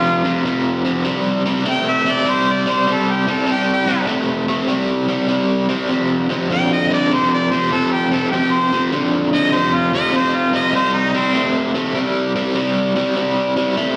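Laid-back and gritty, this swung blues excerpt features a mellow, vintage-toned harmonica taking a jazz-style solo with light vibrato and scooped notes, its sound roughened by overdrive and slapback echo until it drops out at 11.5 seconds. Underneath, a raw, bright electric guitar sits up front, picking an overdriven riff colored by tremolo and slapback echo across the chords F5 and C5, and carrying on alone to 14.0 seconds. The performance sounds like a live gig heard through the venue's PA, bathed in a lush recital-hall reverb.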